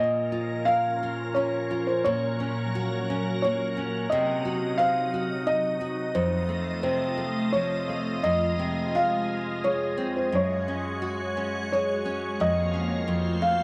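Gentle and dreamy, this rubato children's lullaby in 3/4, cut from a longer piece, sets a mellow felt-muted upright piano melody over a full-bodied fingerpicked nylon-string guitar, while a pure, calm organ-like pad with chorus, phaser and its own reverb enters at 0.2 s to hold sustained chords through a moody progression that moves from Bbm through Cdim and Fm to close on F, all in a moderate echo-chamber space.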